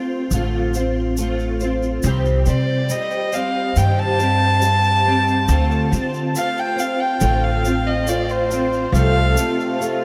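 A bright, picked steel-string acoustic guitar with an ensemble chorus opens this haunting, melancholic excerpt of acoustic folk at a slow 70 BPM in 4/4, joined by woody pizzicato upright bass up front and a grainy tube shaker in the background, before a dark bowed fiddle with light vibrato and analog delay takes the melody at 2.5 seconds over Cm and Dm7 chords, and a reedy, breathing hand-pumped harmonium enters on F/C at 8.9 seconds, all bathed in a huge, dreamy ambient reverb.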